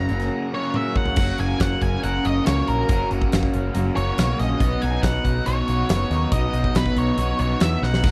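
This sunny, confident classic rock excerpt opens with an octave-fuzz lead guitar carrying the melody over two riffing guitars, a growling picked bass and a very quiet tonewheel organ. A huge, natural-sounding acoustic drum kit joins at 0.1 s with a fat snare, punchy kick, hi-hat, crash and toms, and plays a fill from 0.7 s, with another fill near the close. One riff guitar is compressed and overdriven with a phaser, while the raw garage guitar has a warm, overdriven edge. The round, overdriven bass sits up front, and the organ holds sustained chords through a slow rotary speaker, its shouting, lightly overdriven tone kept far back in the mix. The harmony moves from F# to Badd9 at 4.6 s, all captured in a dry, close 1970s-style studio sound with small room ambience.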